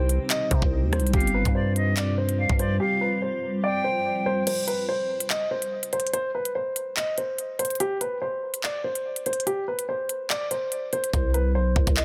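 Dark and menacing, this half-time drill groove, cut from a longer hip hop piece, opens on a dusky, intimate baby grand piano melody with audible action noise, filtered and touched with digital delay. Beneath it sit a clean tine electric piano, a blurred, evolving granular pad and a growling, buzzy 808-style bass up front. An airy, distant silver flute with vibrato adds a second line from 1.1 s, while the electronic drill kit, with its knocking kick, crisp hats, handclaps, rim clicks and crash, is muted at 2.8 s. A break from 4.5 s strips the arrangement down around the piano until the bass returns for the closing moments of a dense, heavily limited mix with light reverb.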